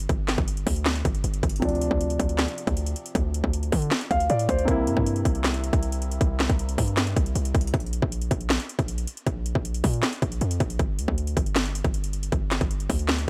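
A half-time trap beat at 157 BPM drives this dark, melancholic hip hop excerpt, with the drum kit's hard-clipped kick, sharp snare, metallic hi-hats and handclaps overdriven and pushed up front with the grit of a small room. A punchy, heavy 808-style bass runs under it from start to finish, its sine tone carrying a noise layer and a fast attack that decays after each hit, ranging from G1 to D3. The opening 1.6 seconds act as a break over a G5 chord before a warm concert grand piano enters, its deep low end softened by a low-pass filter as it accompanies the harmony. The piano drops out at 7.8 seconds, leaving the bass and drums to carry the last stretch through a move from Bb5 back to G5. The chords shift from Dm7 to C7 along the way, and a digital ambience surrounds the whole mix.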